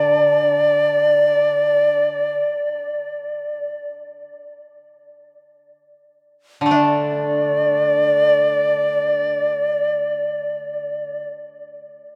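Japanese chamber music in free time, solitary and meditative, where a breathy, reedy end-blown bamboo shakuhachi carries the melody up front with vibrato and soft attacks, while a woody, fingerpicked koto accompanies from 0.0 to 2.4 seconds and returns at 6.6 seconds, the pace slowing from 2.0 to 6.7 seconds, all within a cavernous cathedral reverb in this fragment of a longer piece.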